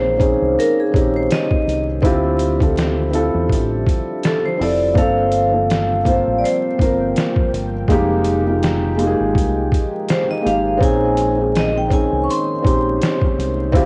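A ringing vibraphone with a slow motor vibrato carries the melody through cassette tape and analog delay in this reflective, nostalgic lo-fi hip hop excerpt at 82 BPM with a gentle 16th-note swing, while a felt-muted upright piano with audible action noise plays soft, intimate accompaniment up front. A round, dark fingered electric bass sounds from the very start, a gritty, pitched-down sampler-style drum kit with a thumpy kick and medium-tuned snare joins at 0.2 seconds, and a very quiet detuned sawtooth pad holds sustained chords over a Bbm11, Dm11, Gm11, Fm11 progression. Light reverb, vinyl crackle and a dulled home-cassette top end give the whole a hazy, lived-in sound.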